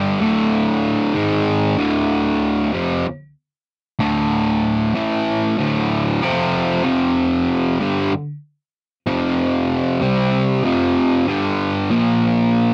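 A bright, fuzz-distorted electric guitar plays alone, picked, double-tracked, compressed and up front, through a brooding, hypnotic metal passage in D minor at 95 BPM in a straight 4/4. It moves from D5 and G#5 power chords into a longer stretch from 1.8 seconds that passes through Dm, A5, D5, F5, C5, G5 and Bb5, all captured as a dry, close 1970s-style studio recording with light reverb and cut from a longer piece.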